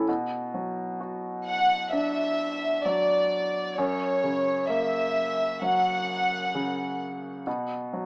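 A warm studio violin section carries the melody from 1.5 s, bowed sul tasto with a soft attack, its pure, floating ensemble tone sitting close and up front in a high register. Beneath it, a clear upright piano plays accompaniment throughout the fragment, its woody, natural sound intimate and forward, with the instrument's action noise audible. This is a slow, heartbroken and emotional pop piece at 65 BPM in 4/4 with a straight feel, in B minor and tuned to A4 = 438 Hz, moving from Bm to F# before settling on B5. Moderate studio reverb lends the parts some space, though the mix has the rough character of a home demo heard through a small speaker. The violins stop at 7.0 s, leaving the piano to close this short excerpt.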